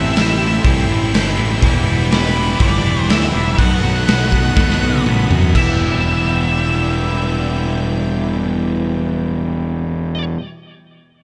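Brooding and hazy, this short excerpt of shoegaze-tinged dream pop rock moves at 122 BPM in E minor, passing through Am7, Em7 and B7 as a dark, fuzzy octave lead guitar with diffuse ambient delay sings its melody over a lush, airy, detuned synth pad with chorus. Beneath it, three picked guitars sit in the background: a crunchy overdriven one with analog chorus, a bright double-tracked distorted one, and a clean, twangy one with reverse reverb. The overdriven fuzz bass and a raw, gritty garage drum kit with a punchy kick sit up front; the drums play a fill from 4.6 to 5.5 seconds and stop at 5.7 seconds, shortly after the section changes on Em7 at 5.5 seconds.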